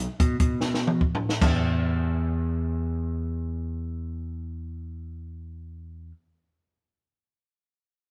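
A growling, overdriven picked electric bass and a dry, up-front compact cocktail drum kit with a punchy kick, high-tuned snare and dark cymbals open this bright, wistful math rock and midwest emo fragment in free time, the drums playing a fill from 0.6 seconds and dropping out at 1.5 seconds while the low bass carries on alone until 6.1 seconds in a live-room sound with light reverb.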